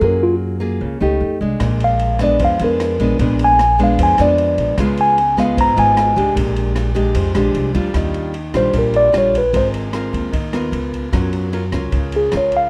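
A straight 4/4 bossa nova groove at 151 BPM drives this breezy, sophisticated short excerpt, cut from a longer piece. A mellow tine electric piano carries the melody up front with a touch of plate reverb, playing from the start until 9.7 seconds and returning briefly at 12.2 seconds, ranging from E#4 to A#5. Beneath it, a fingerpicked nylon-string guitar with fresh strings gives a full-bodied, classical accompaniment, its finger squeaks audible, while a pizzicato upright bass adds a woody, thumpy low end. An open jazz drum kit enters at 1.6 seconds with kick drum, ride cymbal and rim click, sounding dark and smooth with a boomy kick and a rolled-off top. The harmony moves through rich extended chords, from F#maj9 through A#7b9 and C#7 to Ebmaj9, Ab69 and Gbmaj7. The sound sits in a moderate studio reverb with the rough, unpolished balance of a home demo mix.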